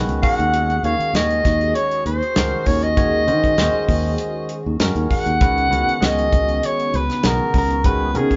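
A barky, lightly overdriven tine electric piano, a hollow, flute-like pad with ensemble chorus sitting in the background, and a fretless electric bass open this intense, funky electric jazz fusion cut at 99 BPM in a straight 4/4, with a dry, damped 70s drum kit of tight kick, medium-tuned snare and hi-hat joining up front at 0.1 s. From 0.2 s a warm soprano saxophone takes the solo melody in jazz style, its vibrato set distant and roomy yet still up front. The band plays live in one large studio with moderate reverb and a dark, rolled-off top, moving from D#m7 to C#9sus4 at 5.4 s.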